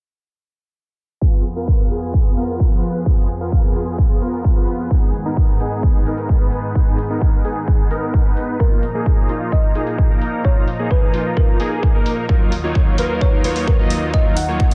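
A punchy, up-front electronic kick sets a straight 4/4 pulse from 1.2 seconds, joined by a faint, layered hi-hat, in this anthemic, powerful festival progressive house excerpt cut from a longer piece. Huge, bright supersaw chords carry the riff through lush chorus, analog delay and a low-pass filter, while a thick, warbling vintage pad holds sustained chords beneath; both parts pump with the sidechain as a filter sweep runs across the whole passage. At 8.6 seconds a round, tine-like FM pluck with a dark, gentle tone enters with the melody, trailing chorus and delay, and the mix sits in light digital reverb.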